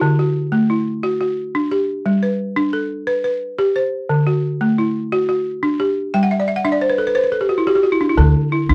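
A buzzing balafon opens this short fragment of West African traditional string and xylophone music, playing flowing arpeggios struck with hard rubber mallets that give each note a dry, woody bite. The mood is joyful, set in D mixolydian in a straight 12/8 at 118 beats per minute counted in dotted quarters, with the harmony alternating between D and G every couple of seconds. The balafon ranges from its low register up into high upper notes, and at 6.1 seconds it breaks into a fill that runs to 8.2 seconds. At that point a pizzicato upright bass with steel strings enters on a low D, acoustic and warm, as the harmony settles onto a D5 chord. Both instruments sit up front in a close, dry studio sound with little reverb, recalling 1970s recordings.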